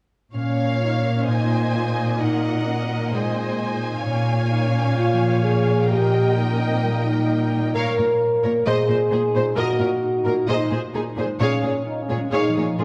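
A heroic, cinematic film-score passage, cut from a longer piece, opens at 0.3 seconds with most of the ensemble at once: a lush violin section carries the melody, violas add smooth, even accompaniment, a mellow French horn section holds punchy sustained chords, and a concert harp rings out arpeggios in the background. A second violin line joins at 0.4 seconds with soft-attacked, expressive bowing. The cellos sit up front with a rich, focused tone, anchoring the bass on a single Bb while the harmony moves through minor and major chords above it. The mood is adventurous and determined, in a steady, straight four-beat pulse. A wet scoring-stage reverb gives the orchestra a spacious, warm bloom until the passage ends at 12.8 seconds.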